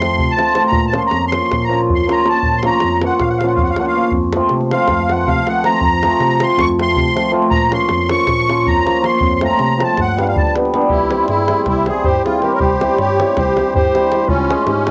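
Balkan wedding-band folk in a restless, virtuosic 9/8 at 319 BPM counted in eighths, cut from a longer piece, where a reedy, shimmering musette accordion sits up front and takes a solo from 0.0 to 10.9 seconds over a hammered, ringing cimbalom, a worn, slightly out-of-tune tine electric piano carrying the bass through its built-in speakers, and a tight, close davul, before a smooth-topped classical clarinet enters with the melody at 10.9 seconds, the accordion, cimbalom and clarinet all bearing a cassette-tape tint within a light reverb that gives the whole a homemade feel.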